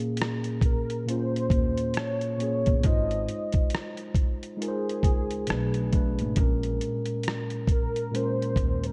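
A slow 68 BPM groove in 4/4 swings its sixteenths lazily, carried by a dusty, sampler-style drum kit of hi-hat, rim click and a thumpy kick that sits up front with a gritty, compressed, tape-softened edge. This nostalgic, melancholic lo-fi hip hop piece opens on a mellow tine electric piano heard through its own built-in speakers, its clean chords tinted by cassette tape as they move from Bbm7 to Ab6, a brief Bm7 and back to Bbm7. A velvety synth lead arrives at 0.7 s, its detuned sawtooth and triangle unison smoothed by chorus, vibrato and analog delay as it holds sustained notes in a fairly high register. At 1.5 s a pizzicato upright bass joins low underneath, woody, warm and thumpy with gut strings. Light reverb and a digital ambience frame the dark, warm production of this short cut from a longer piece.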